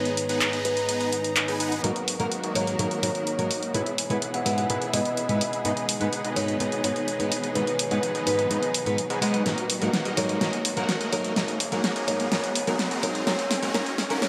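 Festival progressive house with a euphoric, emotional lift, where a ringing, woody kalimba melody with tape echo floats over fingerpicked plugged-in steel-string acoustic guitar, clear bowed strings in the background, and huge, detuned supersaw chords with phaser and a filter sweep, while an up-front big-room drum kit with a huge snare, handclaps and hi-hat enters at 0.1 seconds, a very quiet fat analog bass arrives at 1.8 seconds under a long build-up and riser, a drum fill begins at 9.5 seconds, and a huge ambient reverb washes over the whole mix.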